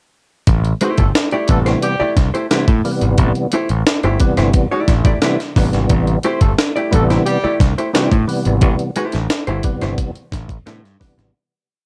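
A gritty, sampler-style breakbeat kit anchors this short, driving funk piece in A minor at 88 BPM, with its thumpy kick and high-tuned snare pitched up, compressed and placed up front in a syncopated groove with ghost notes. From 0.5 seconds, a punchy, overdriven picked electric bass works a syncopated riff anchored on the downbeat, with muted ghost notes and chromatic approach notes. A dark, clean hollow-body jazz guitar adds clipped funk chords. A fat, lightly overdriven tonewheel organ with chorus vibrato, key click and third-harmonic percussion enters at 1.5 seconds with rootless, syncopated stabs and grace notes. A mellow, distant horn section slips in for two brief bursts of tight, short riffs, and the guitar, organ and horns all carry plate reverb. The mood is sly, the production dark and warm with light reverb, and the piece fades out from 8.6 seconds over its Am7 groove.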